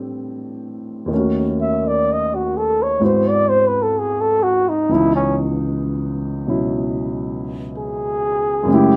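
A breathy flugelhorn carries the melody in this short jazz fragment, entering at 1.6 seconds and playing up front as a close-miked solo with vibrato and scooped notes. Beneath it, a mellow grand piano provides accompaniment from the very start, its long sustain and audible action noise adding to the intimate character. The tempo is a slow 63 BPM in 4/4 with a swung eighth-note feel, and the mood is tender and intimate. The harmony moves from Am9 through D#m7b5 and G#7alt before settling on C#m9 at 4.9 seconds. Light reverb surrounds the two players, and lossy compression artefacts color the sound of this passage cut from a longer piece.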